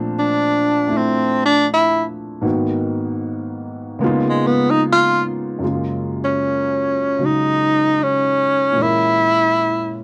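A romantic, intimate jazz ballad in F# major, moving at 77 BPM in 4/4 with a swung eighth-note feel, cut from a longer piece. A concert grand piano carries the accompaniment from the start, its tone natural and up front, with deep bass and audible action noise adding to the closeness. At 0.2 s a tenor saxophone enters with the melody, taking a solo through the first 5.6 s in a jazz style marked by vibrato, scooped notes and a smooth top. Lush extended chords such as A#maj9, C#13 and F#maj9 pass beneath the line, with an A#m7b5 arriving at 8.8 s. Both instruments share a cassette-tape coloring, and light reverb gives the home recording a cozy, worn character.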